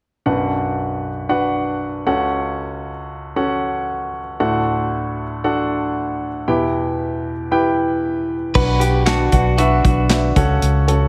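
Piano-driven pop with a dramatic, earnest mood, cut from a longer piece, opens on a clear, polished baby grand piano alone, moving through Bm, F#m/C#, D and Em in a dreamy, reverb-soaked mix. At 8.6 seconds an acoustic drum kit with crash, handclaps, hi-hat, punchy kick and snare arrives alongside a dark, round, foam-muted fingered bass. A clean, compressed electric guitar sings a brief melody through a diffuse ambient delay.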